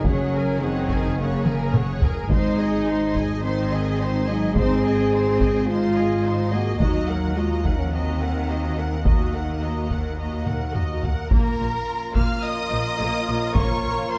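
Driven by heavy-stick taiko drums in a straight 4/4 at 107 BPM, this relentless epic orchestral film cue in Bb minor sets a lush, bowed violin melody and smooth second violin line over expressive, distant violas, sustained French horn chords and rich cello and double bass lines moving from Gbadd9 through Ab and Ebm, with drum fills at 1.5 and 10.5 seconds before clear background trombone chords and stabs from a dark solo trumpet arrive at 11.3 seconds on Bbm, within a moderate scoring-stage reverb.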